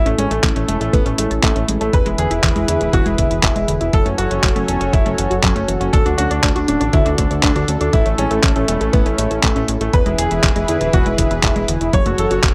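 Danceable and romantic, this italo disco cut from a longer piece moves at 120 BPM in A major, with a bright, intimate concert grand piano carrying the melody through tape echo, its action noise audible, over a smooth, chorused analog pad and a fat, sawtooth bass with a filter sweep. A lush, detuned unison pluck plays arpeggios in the background with 12-bit sampler grit and tape echo, while an overdriven, detuned 8-bit drum machine supplies handclaps and hi-hat and a thumpy electronic kick joins at 0.4 seconds. The chords cycle through A, E, F#m and D in a dry, gritty hardware recording with little reverb.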